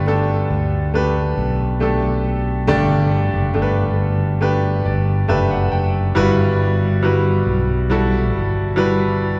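A clear, up-front concert grand piano supplies the accompaniment in this emotional, hopeful pop ballad at 69 BPM in G major, moving from Gadd9 to Emadd9/G at 6.2 seconds after a piano fill from 4.4 seconds, while a growly fretless electric bass holds the low end and a wet church reverb opens up the space around this short cut from a longer piece.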